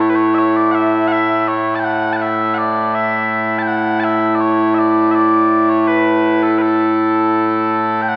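Scottish traditional pipe music in 3/4 at 82 BPM, this short excerpt from a longer piece carries a ceremonial, stirring mood in A major. A set of small bagpipes plays solo for the full 8.2 seconds, ranging from A2 up to A5. Their tone is mellow and sweet, a continuous sound placed up front. The straight triple metre gives the tune a steady, ceremonial bearing. A reverberant recital hall surrounds the pipes, its 1.3-second decay lending the lone instrument a resonant, church-like grandeur.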